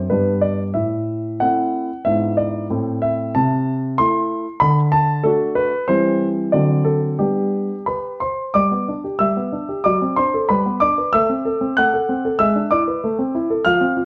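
A solo concert grand piano, up front with a deep bass and short sustain, plays an elegant, playful classical-period sonatina in G major at 94 BPM in 2/4, shaped with a flexible rubato feel and tuned to A4 = 444 Hz. Its phrases move through G, A minor and E7 colours to a D7 cadence back home, and the opening theme returns at 8.6 seconds before this cut from a longer piece breaks off on A minor at 14.1 seconds. A moderate stone-room reverb surrounds the playing, and worn cassette tape adds a warbly, drifting pitch.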